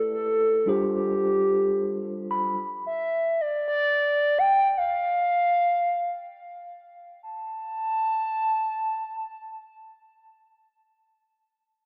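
A hollow, woody clarinet-like synth lead with chorus and vibrato carries the melody through nearly all of this late-night, soulful amapiano fragment, while a mellow tine electric piano sounds A9sus4 and G9sus4 chords and a brief fill before falling away at 2.9 seconds, all bathed in a plate reverb and the worn, warbling drift of old cassette tape through a small speaker.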